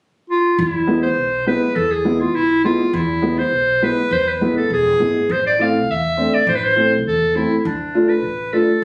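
Captured on a phone in the room, this short cut from a longer klezmer piece has moderate studio reverb and compression that give it a close presence. A clear clarinet carries the melody from 0.3 s, its smooth top and classical-style tone sitting up front as a festive yet soulful solo voice. From 0.9 s, an upright piano supplies accompaniment with a woody, warm, slightly boxy sound and long sustain, also placed forward in the mix. Underneath, a pizzicato upright bass on steel strings enters at 0.6 s and gives a thumpy acoustic foundation at a lower level. The harmony opens on E, moves to Am at 5.3 s, and reaches Dm at 7.7 s in a two-beat metre with a straight feel.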